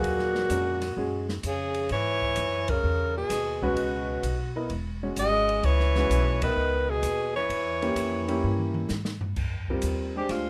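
A swung 4/4 pulse at 129 BPM drives this searching, intense excerpt of modal jazz, cut from a longer piece. A clear, up-front alto saxophone carries the melody with vibrato until 8.7 seconds, while a distant, roomy tenor saxophone with light vibrato, soft attacks and scooped notes plays a second line beneath it, then takes a short solo from 9.4 seconds. A concert grand piano with audible action noise and deep bass comps underneath, and a woody, thumpy pizzicato upright bass holds down the low end. The open drum kit, with dark cymbals, a medium-tuned snare and a boomy kick, sounds airy and polished, and the band hits accents at 2.6 and 6.3 seconds before the drums play a fill from 8.4 seconds. The harmony moves from Ebm9 to Dbm9, through Edim7, and lands on F9sus4 as the new section opens, all in a moderate studio ambience.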